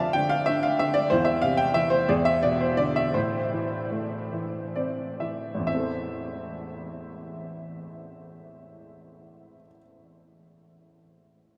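A 6/8 pulse moves with free rubato, easing and slowing between 1.1 and 5.7 seconds, giving this brief classical fragment a melancholic, reflective mood. A single upright piano carries the whole piece, its tone clear, woody and natural, with short sustain and an up-front presence spanning from the low A1 to A5. The harmony drifts from Fmaj13 through Cadd11/E and E7 before settling on Am. Near the end of that slowing passage, the piano adds a fill from 4.3 to 5.7 seconds before the music turns toward a second section. The instrument sits in a vast, echoing space, where a huge, wet reverb with a 9.0 second decay lets each phrase hang in the air. The excerpt is cut from a longer piece and ends at about 11.6 seconds.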